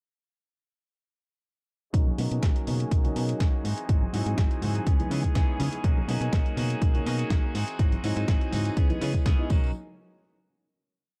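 An overdriven, punchy electronic kick sits up front, driving four-on-the-floor through this short, funky and sunny piece of filtered disco house at 123 BPM in B major. From 1.9 s the full groove arrives at once: a snappy FM bass with a metallic attack jumps between octaves, a dark, boxy grand piano plays a rhythmic riff of rootless chords with a phaser on it, and a twangy clean electric guitar strums sixteenths in upper chord shapes. A chamber violin section holds high, biting chords with light vibrato, while a gritty, tape-toned sampler kit supplies programmed closed and open hats and a backbeat snare, with very quiet tambourine and congas adding bright disco percussion. The piano, violins, guitar and bass all pump against the kick and sit under a low-pass filter, and a filter sweep runs across the groove as the harmony cycles through Bmaj9, G#7b13 and C#m7. The groove gives way at 9.7 s to a final hit, all set in a small room with a dark, warm production.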